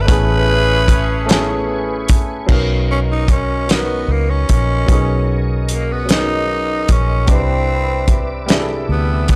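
A raspy, growling tenor saxophone carries the melody in this tender, sensual slow R&B piece in six-eight, stepping into a solo at 2.5 seconds with light vibrato and a gritty edge. Beneath it, a worn baby grand piano lays down long-sustaining accompaniment, while a smooth tonewheel organ holds chords in the background, with audible key click, chorus vibrato and a slow rotary speaker. A dark, foam-muted fingered electric bass sits up front, round and punchy with tube saturation. The acoustic soul drum kit has a fat snare, tight kick and dark cymbals, and sounds close and mid-forward in a small room. In the opening bars a clear, distant horn section adds tight jazz-style stabs with tape echo over Amaj9, dropping away by 2.0 seconds, shortly before the harmony moves to Bmaj9 and then Cmaj9, all within a dry, gritty recording touched by studio reverb.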